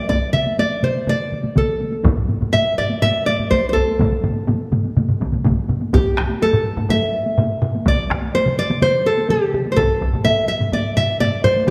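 Powerful and ceremonial, this short cut from a longer piece sets a Japanese traditional taiko drum ensemble in a straight 4/4 pulse that gradually speeds up across its 11.7 seconds. A fingerpicked nylon-string guitar carries the melody from the very start, its warm, classical tone sitting up front and staying between G4 and E5. Taiko layers join almost at once, and a fourth taiko part arrives at 2.0 seconds to thicken the drumming. Two of these drum parts are struck with heavy sticks and have a vintage, band-limited character, while the other two use hard sticks, one heard in a small room and the other close and dry. The whole ensemble sits in a wet recital hall reverb, and the music moves from its opening section into a second one at 5.9 seconds.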